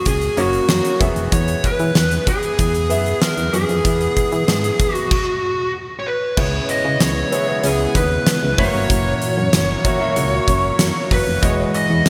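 A straight 4/4 pulse at 95 BPM drives this glossy, romantic 1980s-style pop piece in F# mixolydian, cut from a longer track. A huge arena drum kit sits up front with gated reverb, pairing a fat snare and punchy kick with bright cymbals, while a solid FM bass adds round, mellow notes with a fast attack that decays. A clear concert grand piano accompanies with long sustain, deep bass and audible action noise. Above them, a dark fuzz lead guitar, distorted, compressed and run through digital delay, carries the melody. After a stop from 5.1 to 6.4 seconds, a swirling, detuned sawtooth pad with phaser and chorus enters in the background, as the harmony moves from F# and E to C#m7, F#7 and Emaj9. The bright digital production is bathed in a lush hall reverb.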